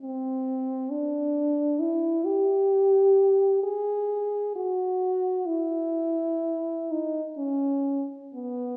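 A mellow French horn sounds alone from the first moment, playing a lyrical, serene classical line in free, expressive rubato. The tempo hovers around 62-68 BPM in 4/4, and the horn moves within a modest span from B3 to G#4. Its tone is mellow, with a light vibrato and a smooth top, and it sits up front in the sound. A wet recital hall reverb surrounds it, lending the resonance of a church or concert hall. This brief fragment of a longer piece lasts 8.8 seconds.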